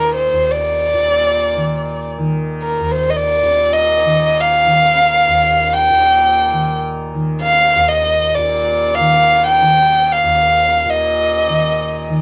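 A bowed violin and a tanpura drone begin together in this short passage of Hindustani classical music, taken from a longer performance of raga yaman in Eb. Unfolding in free time, the music carries a radiant, devotional mood. The solo violin sits close and up front, carrying the melody between Bb4 and G5 with a soft attack, light vibrato and an airy, intimate sul tasto tone. Beneath it, the tanpura holds its drone from Eb2 to Eb3 at a lower level, softly plucked, buzzing and shimmering with a warm acoustic glow. A moderate studio reverb gives the pair a gentle sense of space across the full 12.2 seconds.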